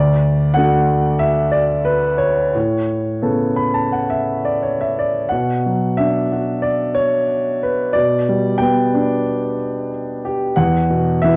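Classical solo piano at 91 BPM in a relaxed, rubato 4/4, where an intimate, boxy grand with long sustain and audible action noise sits up front, playing alone from 0.0 to 11.4 s across D2 to B5, moving from D through Aadd9 with a fill at 3.2 s before settling into B minor at 5.3 s over Bm, G/B and E5, all heard through moderate recital-hall reverb and a worn cassette tape's warbly pitch drift in this short cut from a longer piece.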